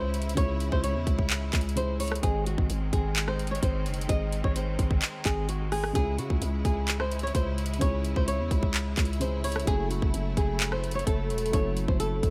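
A trap drum kit with a hard-clipped kick, metallic hats, handclaps and rim clicks hits up front from 0.1 seconds beside a growling, buzzy 808-style bass, while a dark fingerpicked flamenco guitar carries the melody through digital delay over a mellow, boxy grand piano in the background and lush, bowed symphonic strings holding sustained chords, giving this eerie, hard-hitting half-time trap fragment at 129 BPM in C# harmonic minor a small-room feel.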